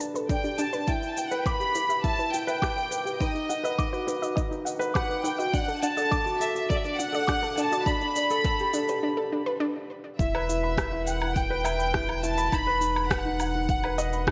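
A straight 4/4 pulse at 103 BPM starts with an electronic shaker, rim click and woodblock that sound produced and re-recorded in a small room, joined by a deep, up-front electronic kick drum with a tape-warm tint. This melancholic, hypnotic piano and strings electronica in E minor, cut from a longer piece, builds through Gadd9, Em, B and D chords before a short break at 9.0 s and a drop at 10.2 s. A felt-muted upright piano carries the riff up front, soft and intimate with thick felt, short sustain and digital delay. An analog sawtooth pluck plays round arpeggios with a noise layer, moving notch filter, chorus, delay and sidechain pumping until 9.6 s. Above them a clear, pure violin section bowed sul tasto floats the melody close to the listener. At the drop a sine sub bass holds a low E1 with sidechain pumping under Em and B/E chords, all set in a lush hall reverb with digital ambience.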